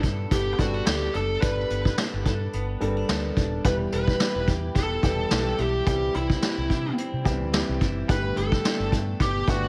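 A dark, bluesy overdriven lead guitar with tape echo carries the melody from 0.3 seconds over a brushed drum kit with gated reverb, a round, foam-muted fingered bass, an intimate concert grand piano with audible action noise, and a clean, chorus-drenched electric guitar riff tucked in the background, giving this uplifting, glossy 1980s-style pop clip in G major a lightly swung 108 BPM groove through Gadd9, Em and C.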